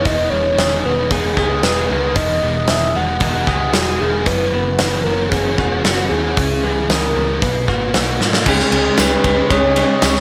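Shoegaze and dream pop rock at 114 BPM in E lydian, blissful and hazy, with a soft octave-layered synth lead carrying a round, chorused melody with vibrato and tape echo over a thick fuzz guitar riff, a dark overdriven semi-hollow guitar riff washed in reverse reverb, lo-fi arpeggios from a slightly broken-up guitar through a small old amp, and a foam-muted vintage bass. A big, mid-forward rock drum kit with a tight kick and rolled-off top sits up front as the harmony moves through Emaj7, F#7sus4, C#m7 and Bmaj7 before a drum fill at 8.2 seconds. At 8.5 seconds the harmony lands on C#sus2 as a very quiet smooth sawtooth pad and a double-tracked overdriven guitar riff enter, joined at 9.0 seconds by a faint, jingly tambourine in this excerpt from a longer piece.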